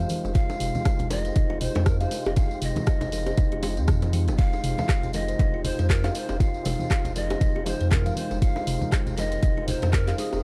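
Breathy cane pan pipes carry a chiffy, vibrato-laced melody over a woody, thumbnail-plucked kalimba, lightly overdriven tonewheel organ stabs spun through a fast rotary speaker, a round sine sub bass and soft-handed congas, all opening this hypnotic, earthy afro house fragment. A very quiet detuned sawtooth pad, an afro-pop kit of handclaps, hi-hat, rim click and toms, a jingly tambourine, tight high-tuned bongos and a deep, up-front electronic kick fill out the groove over a single Fm7 chord. The kalimba, organ and bass pump against the kick, and tape echo trails the pipes, kalimba and organ in a dry, gritty small-room sound with cassette grain.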